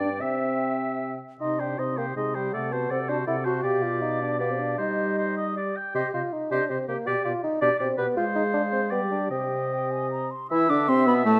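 In a quick triple metre of roughly 147-167 BPM, taken with a rubato feel, this spirited, lively classical-period movement for wind quintet in C minor is cut from a longer piece. A hollow, airy silver concert flute carries the melody with vibrato and tongued notes, while a vintage-sounding oboe with light vibrato sings a second line. A clear, close-miked clarinet sits in the background of the accompaniment alongside a mellow French horn with a soft attack and smooth top. Up front, a dark bassoon anchors the bass. The harmony opens on C, turns to C minor at 1.4 seconds, moves through D7 and G7 harmonies and an F minor colour, and settles back on C at 10.5 seconds. A moderate recital-hall reverb and a warm, shadowy production give the ensemble a cosy glow.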